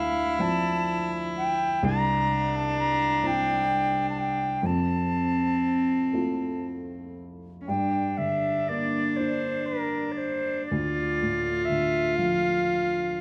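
Celtic folk slow air in G dorian, drifting at a rubato 38-43 BPM in 6/8, with a longing, mournful mood in this short section cut from a longer piece. A pure, straight-toned wooden flute carries the tongued melody up front, while one bowed cello with a rich gut-string, reedy tone in period style sings a close second line. A dark, mellow upright piano, intimate and vintage with audible action noise, supports them through Dm7, Cadd9 and Fmaj7 before the music turns to Gm at 7.7 seconds and settles on Dm, all caught by close, detailed microphones in light reverb.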